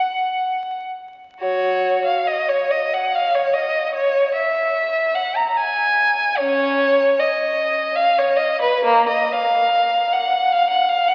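Heard through the crackle and dulled top end of a very old 78 rpm record, a lone bowed violin sings into the long, wet reverb of a cathedral. This brief fragment of a free, expressive classical piece in F# major moves at about 73 BPM in 3/4, with uneven, rubato beats and a yearning, meditative mood. The violin sits up front with a rich, smooth tone and vibrato, ranging from A#3 to A#5 over its 11.1 seconds.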